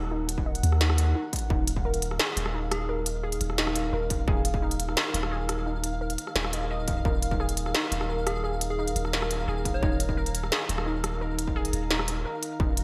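A distorted electronic kick stands out up front in this spacious, tense excerpt of half-time drum and bass, cut from a longer piece and dropping in on a dark Eb minor chord that opens into a suspended one at 1.5 seconds. Beneath it, a long, deep 808-style sine bass decays from each fast attack, while an industrial kit of clanging snare, rim click and crisp hats sits close in gated reverb, both drum parts re-recorded in a large room. A moody, detuned sawtooth pad holds sustained chords with a slow attack, a moving notch, chorus and sidechain pumping. Alongside it, a warbling, lo-fi pluck with a nasal edge plays arpeggios through cassette tape character, chorus and digital delay. A tempo-synced gated texture pulses in from 1.5 seconds, and a round, keys-like FM lead with vibrato drifts in the background in brief phrases at 2.7 and 8.3 seconds. The production is bright and 1980s-style digital with light reverb, and a short break falls near the end.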